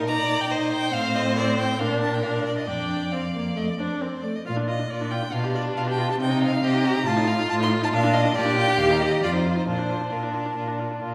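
A focused, vibrato-rich first violin carries the melody from 0.1 s, spanning A4 to C6 in a quick, spirited classical-period movement for string quartet at 138 BPM in Bb major. A second violin with a smooth top supplies the inner line, the viola adds soft-attacked, expressive accompaniment with portamento, and an up-front, warm cello anchors the bass, with the harmony arriving on Bb at 9.7 s. The cheerful passage, cut from a longer piece, sits in the wet reverb of a church or concert hall.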